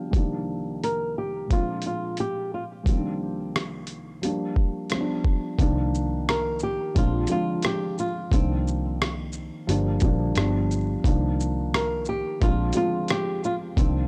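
Hazy and melancholic, this lo-fi hip hop excerpt in C minor moves at 88 BPM with a swung 16th feel, its dry, gritty hardware sound passing through a filter sweep over the opening 5.6 seconds. A thick-felt upright piano, soft and intimate with audible action noise, carries Cm11, Bb7 and Gm7 to G7 changes beneath a dark, fingerpicked flamenco guitar melody that enters at 0.8 seconds, while an overdriven, sampler-style kit with a thumpy kick, hi-hat, rim click and shaker sits up front. At 5.6 seconds a round, foam-muted electric bass joins with transformer saturation for the second section.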